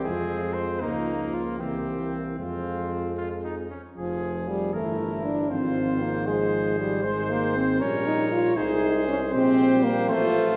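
Stately and warm, this classical brass quintet excerpt moves at 78 BPM in a straight 6/8, in F minor, with harmony that starts on Fm, Bbm/Db and C7 and later drifts toward Ab. A warm cornet carries the melody over a smooth-topped trumpet second line, while the clear, present French horn sits up front in the accompaniment, joined by a punchy trombone with light vibrato in the background. A bright bass trombone with vibrato anchors the bass from a distant, roomy position, and the whole ensemble is bathed in the lush 1.7-second reverb of a church or concert hall.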